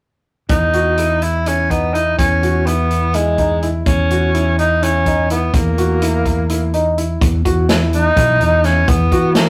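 Progressive instrumental band music in 7/8 at 250 BPM in eighths, intricate and driving, in E lydian, cut from a longer piece with a rough rehearsal-room sound and moderate reverb. A breathy, whispered tenor saxophone carries the melody up front with vibrato and scooped notes. Beneath it sit a growly, amped fretless bass, a punchy big-band drum kit on hi-hat, kick and snare, and a clear but worn grand piano arpeggiating from 0.7 seconds, before a shift to an E5 chord at 7.2 seconds.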